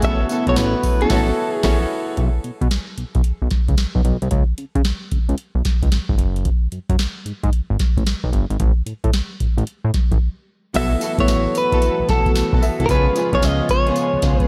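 A booming analog drum machine with a deep kick, crisp snare, metallic hats and tambourine drives this bouncy, flirty new jack swing excerpt at 112 BPM with a swung 16th feel, joined throughout by a fat, detuned analog bass, while a clean, compressed electric guitar melody with harmonic tremolo and digital delay, a clear concert grand piano, a shimmering pulse-width pad and lush bowed string stabs drop out after about 2 seconds and return around 10.7 seconds, all within a dark production touched by light reverb.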